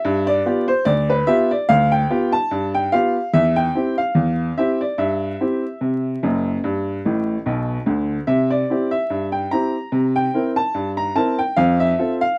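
Lively and jaunty, this ragtime piece in C major moves at 73 BPM in 2/4, with a swung sixteenth-note feel and tuning set slightly sharp at A4 = 441 Hz. A solo upright piano with a clear, woody, boxy tone sits up front across a range from F#1 to Bb5, working through G7/D, C/E, C/G and G before a short fill from 7.0 to 8.3 seconds leads into C, C7 and F. Cut from a longer piece, it has the dry, close sound of a 1970s-style studio, with light reverb and a layer of vinyl crackle.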